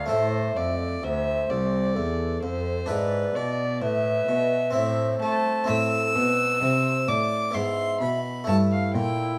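In a straight three-beat metre, this flowing, introspective baroque-style sonata movement sets a bowed, gut-strung violin with light vibrato up front on the melody over an airy, wooden baroque flute carrying the second line, while a round, plucked Flemish-style harpsichord accompanies and a nasal, period-style cello holds the bass, heard within a moderate large-studio reverb as a short excerpt cut from a longer piece.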